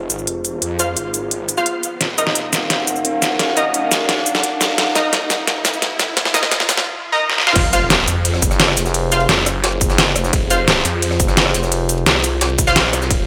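A dark analog pad, moody with detuned saw and square layers and a chorus and phaser shimmer, opens alongside a snarling distorted saw bass, both pumping against the beat in this dark, futuristic stretch of technical drum and bass at 173 BPM in F phrygian. A dubstep drum kit sits up front with a deep snare, crisp hats, cabasa, rim clicks and crashes, while a riser and impact hover in the background and an orchestra-hit-like synth stab, bold and bright with ring modulation, cuts through with dub echo. Over Fm and Ebm chords, the build-up carries a drum fill before the drop lands at 7.6 seconds on Fm with an impact. There a punchy, tape-warm electronic kick joins, along with a gritty, overdriven jungle sampler-style kit with a high-tuned snare and ride cymbal in the background. A thick, growling FM bass pushes up front from 8.4 seconds, and the whole passage is washed in a lush hall reverb, a fragment cut from a longer piece.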